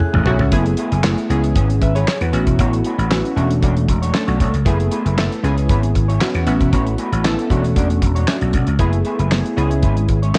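A short drum fill on a dry, dark 70s kit with a fat snare and tight kick opens this late-night, danceable early-eighties boogie funk excerpt, with a punchy sawtooth-and-square polysynth comp and a slightly broken-up, picked electric guitar riff, both treated with chorus, sounding from the start. A growly, amped slap bass sits up front with the drums from 0.1 seconds, while handclaps, hi-hat and toms fill out the kit. The groove cycles through F#m11, C#m7, A69 and E13sus4 chords in light reverb and studio ambience.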